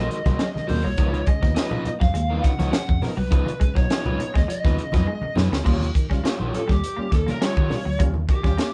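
A crisp, punchy fusion drum kit drives a straight, strutting 103 BPM funk groove in Eb mixolydian, its high-tuned snare sitting up front with a gritty sampler edge, while a round, foam-muted fingered bass and soft, low-tuned congas fill out the pulse. A twangy clean electric guitar riff and a crunchy overdriven rhythm guitar play alongside a percussive tonewheel organ with key click, chorus vibrato and slow rotary speaker that stabs over chords moving from Ab9 to Db9, all in a small, lively room with a cassette-tape character. After a drum fill at 5.1 s, a dark, compressed fuzz lead guitar, heard carrying the melody from the start, takes an energetic solo over Eb9 from 5.7 s, and the overdriven guitar drops out at 7.7 s in this short excerpt of a longer piece.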